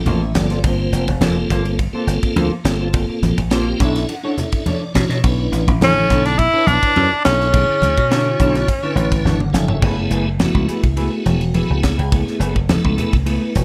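A dark, slick club sound with a moderate reverb frames this driving electric jazz fusion cut, moving at 105 BPM in a straight 4/4 and settling into F# minor at 9.8 s. A punchy, foam-muted thumbed slap bass sits up front under a crisp, airy drum kit with a high-tuned snare and punchy kick, while low-tuned congas with a thin skin play along in the background. A piping tonewheel organ with key click, light overdrive, chorus vibrato and a slow rotary speaker supplies the accompaniment and adds fills at the opening, around 3.5 s and just before the change at 9.8 s. A clean semi-hollow electric guitar with analog chorus places picked stabs over chords moving from Gm11 to Bm11 and then F#m11. A bright, forceful tenor saxophone takes a brief jazz solo with vibrato from 5.8 s to 9.2 s, and a drum fill leads into the final section of this fragment of a longer piece.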